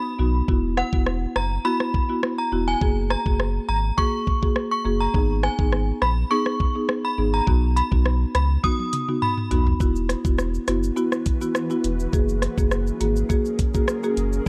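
A chiming FM synth with a mellow, inharmonic ring and ensemble chorus carries the melody over a tough, sultry dancehall groove, dropping out after 9.6 seconds just as a drum fill closes the first section. Beneath it, a dark, woody marimba pumps against the sidechain, a round sine sub bass sits deep and up front, and an electronic afro-pop kit knocks with metallic hats, rim clicks, shaker and toms. From 10.8 seconds a faint, blurred granular pad drifts in with its own reverb, all caught in a dry, gritty cassette-tape sound.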